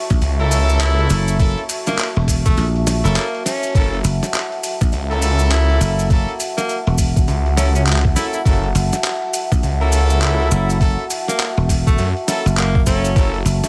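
A swirling, phased and saturated detuned saw bass sits up front alongside a punchy, growly thumbed slap bass and a thumpy, pitched-down electronic kick in this funky, gritty glitch hop excerpt at 102 BPM in F# minor, swung on the 16ths and opening on an F#7#9 chord. A compressed boom bap sampler-style kit of handclaps, hi-hat and medium-tuned snare, with studio reverb, plays alongside grainy close maracas, while a clear jazz-style horn section adds stabs through dub echo and sidechain pumping. A bright, scooping tenor saxophone carries the melody with 12-bit sampler grit and echo over a moody, nasal analog pad, and a short break arrives at 3.2 seconds in an otherwise dry mix.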